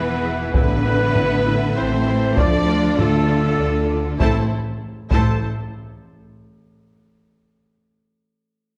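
A straight 3/4 pulse at 98 BPM drives this heroic, epic orchestral film-score excerpt in A minor, with solo taiko drums struck with heavy sticks entering at 0.5 s beneath up-front double basses and close, focused cellos, while very quiet round timpani touches on soft mallets mark the opening and again from 4.2 s. Over this, a lush violin section carries the melody in the background, shadowed by a very quiet, distant second violin line and a pure, bright flute group, as smooth violas, a soft-attack string section, dark roomy French horns, mellow trombones and vintage-toned trumpet stabs fill out the harmony. A wet scoring-stage reverb gives the dark, warm production its sense of space as the chords move from E to A minor, D minor and back to A minor.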